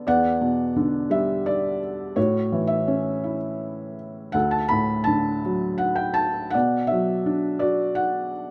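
In an unhurried 3/4 at about 83 BPM, the pulse stretches and relaxes with a free rubato feel, giving this short classical fragment a lyrical, breathing quality. A single felt-muted upright piano plays alone throughout the 8.5 seconds, its tone soft, mellow and intimate, and it sits up front in a light reverb. The playing spans from D2 in the bass to B5 at the top. In D major, the harmony moves from Em7 through A6 to D before settling on Bm. The mood is cool and moody, and the instrument is tuned slightly low, to A4 = 438 Hz.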